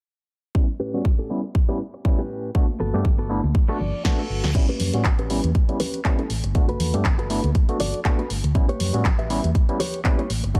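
A gritty, barky overdriven electric piano pumping under a low-pass filter and phaser opens this funky, feel-good filtered disco house excerpt at 120 BPM with a 16th-note swing alongside an up-front punchy electronic kick at 0.5 s, soon joined by a compressed, clean direct-recorded guitar riff, background tambourine and congas, and at 2.8 s a dark, round hollow-body fingered bass, all circling A9 and Gmaj9 in A mixolydian beneath filter sweeps, until a guitar fill and reverse cymbal lead into a drum fill at 4.0 s where a house kit with punchy snare, crash, handclaps and bright hi-hats lifts the groove.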